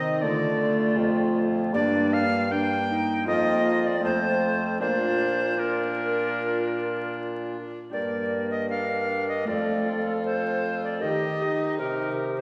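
From the opening, a bright, chiffy tenor recorder carries the melody of this stately, courtly renaissance-style consort dance, alongside an airy, mellow second tenor recorder, a ringing fingerpicked Celtic harp, a gut-string viola with a reedy, smooth top, and a punchy vintage bassoon on the bass, all set in a reverberant concert hall beneath a layer of vinyl crackle, with the phrase shifting to a new section at 7.9 seconds in this cut from a longer piece.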